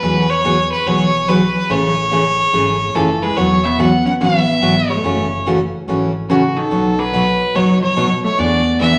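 Cheerful and swinging, this country fragment sets a clear, earthy fiddle melody with light vibrato over a bright, full-bodied acoustic guitar whose picking carries audible finger squeak. A woody pizzicato upright bass sits low beneath them, and at 3.0 seconds a dark, clean hollow-body electric guitar joins with a compressed second line. A large, wet studio reverb surrounds the ensemble as the chords move from Eadd9 through F#m7 and B to E7.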